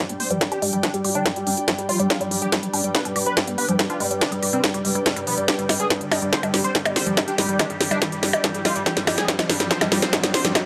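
From the first instant a thick, nasal unison lead with phaser and delay rides over a woody wave-folded pluck riff, a resonant drone with moving overtones, an ethereal airy pad and an up-front techno kit with cracking snare and smooth hats, as a distorted electronic kick enters at 0.4 seconds and a riser joins at 3.0 seconds to drive this intense, pumping psychedelic trance build-up in G major at 142 BPM.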